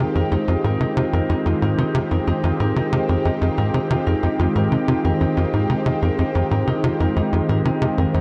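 Expansive and cosmic, this short excerpt of ambient, sequencer-driven space music moves at 92 BPM in a straight 4/4, resting on a single F minor seventh chord in F minor with tuning set to A4 = 445 Hz. A tight, punchy sequencer bass drives a nasal sawtooth and square-wave riff between F2 and C3, its fast-attack filter pluck decaying, sitting up front with subtle chorus and tape echo. Above it, a lush, thick unison pad of detuned sawtooth and square waves holds sustained chords from Eb3 to G4, swelling in slowly and colored by chorus and phaser, also placed up front. A concert harp plays mellow, ringing fingerpicked arpeggios between Eb4 and C5, trailed by tape echo. Very quiet in the background, a bubbling, resonant stepped-filter texture in the same register drifts with random filter steps, a soft attack and a long release, and all four parts play throughout the 8.2 seconds inside a moderate plate reverb with a 2.9-second decay.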